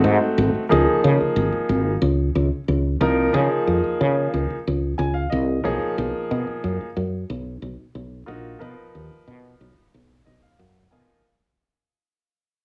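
A concert grand piano and a fretless electric bass open together on this short, bright and funky electric jazz fusion cut, taken from a longer piece and fading out almost from the start. The piano comps with a brilliant, long-sustaining tone bathed in plate reverb, breaking into fills around 4.6 and 9.9 seconds, while the up-front bass sounds woody, growly and round. A light small-room ambience frames the pair as the harmony moves from a Dbadd9 chord to Cbmaj7.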